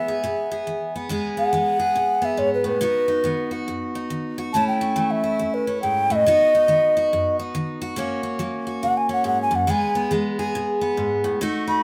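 A breathy alto ocarina and a picked steel-string acoustic guitar open together in this sunny, down-home country cut from a longer piece, swinging at 140 BPM in 4/4 in E major, tuned slightly low with A4 at 437 Hz. The clay ocarina, close-miked and up front with a tongued, straight tone, takes a solo from 1.1 s to 11.8 s over a bright, full-bodied jumbo guitar moving through E, B, A, B, F# and back to E. A moderate studio reverb gives the pair a modest sense of room.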